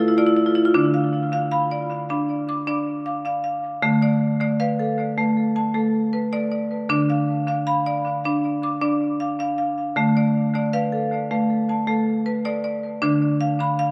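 In a straight 4/4 at 78 BPM, this meditative, hypnotic world piece, cut from a longer work, features a solo marimba played with hard mallets that opens with a brief fill before circling between D minor and D minor sixth chords in the D kumoi scale across a D3 to D6 range, its percussive, boxy, up-front tone steeped in analog delay and a moderate spring reverb for an echo-heavy sound.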